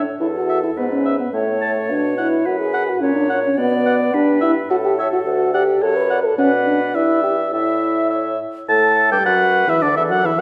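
A clear, close-miked oboe with light vibrato sits up front on a second line from 0.5 s, beside an airy, bright silver concert flute carrying the melody, a distant, roomy French horn and a background clarinet in accompaniment, and a mellow, vintage-toned bassoon on the bass, in this cheerful, spirited excerpt of a quick classical-period wind quintet movement at 107 BPM in a straight 2/4 that settles into D major and is bathed in a wet concert hall reverb.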